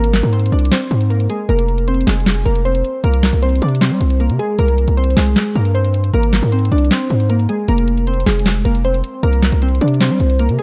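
Brooding and dark, this half-time trap hip hop excerpt at 155 BPM cycles through Abadd9, Fm and C5 as glassy, wave-folded digital keys with chorus and a filter sweep carry the melody over a punchy, heavy 808-style bass with a noise layer, while an up-front trap kit of handclaps, hi-hat and a sharp snare carries vintage 12-bit sampler grit, all in a dry, dark and warm production.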